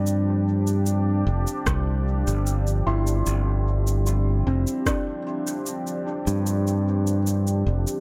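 Spacious and peaceful, this ambient dub cut from a longer piece moves at 75 BPM in a straight 4/4, resting on a G7sus4 chord with an echo-heavy mix and light reverb. A deep, moody pad with a detuned sawtooth character and sub octave holds sustained chords under chorus, while a felt-muted upright piano plays intimate, boxy arpeggios with audible action noise, 12-bit sampler grit and analog delay. A bright, punchy fingered electric bass sits up front, an electronic shaker and rim click carry tape-warm dub echo, and a muffled, pitched-down electronic kick thumps in from 1.7 to 5.0 seconds.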